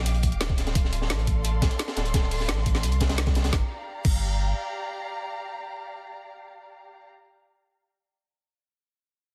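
Liquid drum and bass at 173 BPM in G minor, rolling and lush, cut from a longer piece: a dark, distant chamber string section holds expressive bowed chords with vibrato until 7.1 seconds, pumping under sidechain, over a round, deep sine sub bass that sits up front. An overdriven electronic kick with a knocking tone joins a layered kit of woody snare, bright hats and crash cymbal, while a gritty, saturated acoustic breakbeat kit with a high-tuned snare and rolled-off top adds its own hi-hat and snare, and the drums sit in studio reverb. The harmony moves from Ebmaj9 to Dm7 before settling on Gm7 at 3.5 seconds, all within a dense, heavily limited modern master.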